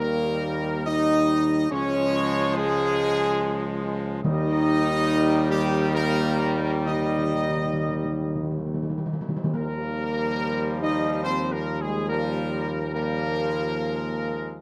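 A close, detailed recording with little reverb frames this solemn, majestic classical brass excerpt in 3/4 at a stately 70 BPM, centred on Eb with a mixolydian colour that settles into Eb major at 9.5 s. An up-front trumpet section carries the melody with a warm, lightly vibrato-touched tone, over sustained chords from mellow French horns in the background and a bright, tight trombone section, while a distant, roomy solo tuba holds the bass. Timpani with medium mallets sound close and dry, playing a fill from 6.9 s until the harmony opens onto an Ebadd9 chord at 9.5 s, then dropping out at 10.8 s.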